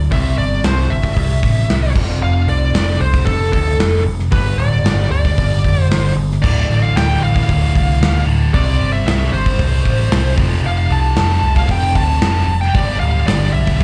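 Heavy and driving, this hard rock excerpt at 114 BPM in a straight 4/4 sounds like a live club gig heard through the venue's PA, with a dull top end. A growly, punchy overdriven bass sits up front beside a gated 80s drum kit with bright cymbals and a punchy kick, while an overdriven semi-hollow guitar with a hollow-body character plays the riff over chords moving from C through F, G5 and Dm. A smooth overdriven lead guitar carries the melody with slapback echo, and at 6.4 seconds a heavy high-gain guitar joins the riff in the background, distorted and also touched with slapback echo.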